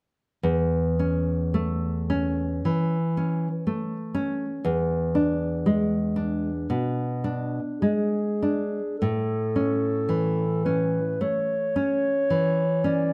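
A serene, romantic duo for classical guitar and clarinet opens with the nylon-string guitar alone, fingerpicked and up front, its dark, full-bodied tone sounding in the deep register over a gently rubato pulse in four. The harmony rests on an A chord over E before moving to E7, giving the opening a calm, settled feel. At 7.8 seconds the clarinet enters with a mellow, classical-style solo melody in its middle register, floating just behind the guitar. The two continue together as the music returns to A at 9.0 seconds, carrying through to the end of this fragment, cut from a longer piece, at 13.1 seconds. Close, detailed microphones catch the intimacy of both instruments, while a moderate recital hall reverb adds a gentle sense of space.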